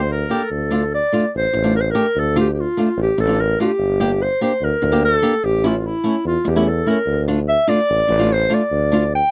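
A straight 4/4 pulse at 146 BPM drives this bittersweet, soulful klezmer excerpt in D minor, where a breathy, mellow clarinet with light vibrato and soft subtone sings the jazz-style melody up front, a reedy accordion sounds only for the first 0.5 seconds, a fingerpicked acoustic flamenco guitar enters at 0.3 seconds, and a clear, punchy tuba carries the bass through Gm, Dm and A chords in a dry, close 1970s-style studio sound.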